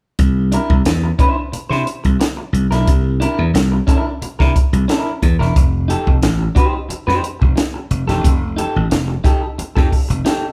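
A growly, bright slap bass sits up front alongside a dry, compact cocktail drum kit with a high-tuned snare and punchy kick, while a slightly broken-up, compressed electric guitar adds picked accompaniment in this strutting, funky excerpt of a band playing live in one room, moving from a C9 to an F9 chord at 5.6 seconds under a moderate large studio reverb.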